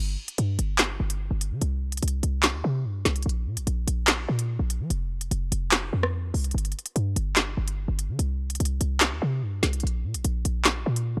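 A half-time drill groove at 146 BPM in 4/4 drives this cold, dark hip hop cut in G minor, with an electronic drum kit entering at 0.3 seconds and pairing handclaps, crisp hi-hats and rim clicks with a woody snare. Beneath it, a short 808-style bass runs from F1 to F3, punchy and tight with a sine core, a noise layer, a fast attack and a decaying tail. Both parts sit up front in a dry mix with little reverb.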